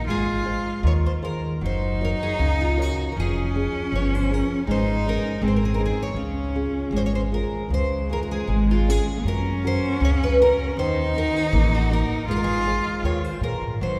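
This fado-style ballad moves at a rubato 79 BPM in 2/4, set in Db major with a nostalgic, tender mood, and it is cut from a longer piece. A fingerpicked twelve-string acoustic guitar carries the melody from 0.1 seconds, its jumbo body giving a full-bodied, shimmering, octave-doubled tone with audible finger squeak. Beneath it, a small nylon-string guitar fingerpicks the accompaniment, while a single bowed cello sits close and up front as a second line, smooth and even with a rich vibrato. An upright bass, plucked on gut strings, adds a woody, dark, thumpy low end and sits a little louder than the other parts. The chords drift through Ab6, Gb, Db/F and an Absus4 resolving to Ab, and the phrase repeats from 7.7 seconds over Gb, Ebm and a return to Ab6. A wet church reverb with a 3.0-second tail surrounds the ensemble, lending the recording the spacious air of a church or concert hall.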